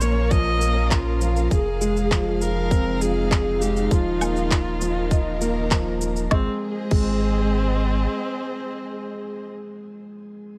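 A steady, straight 4/4 pulse from a tight, tape-warm electronic kick and an organic electronic kit of woody snare, handclaps, shaker, woodblock and crash drives this hopeful, luminous piano-and-strings electronica fragment, where a felt-muted upright piano riff with delay and shimmer reverb sits over a round sine sub bass and lush, sidechain-pumped symphonic strings while a single vibrato viola carries a smooth melody, moving from Bbm through Fm7 and Ebsus2 before landing on Ab at 6.3 seconds. The drums stop at 7.1 seconds, the bass at 8.1 and the strings and viola at 9.5, and the piano then rings on alone to 10.6 seconds.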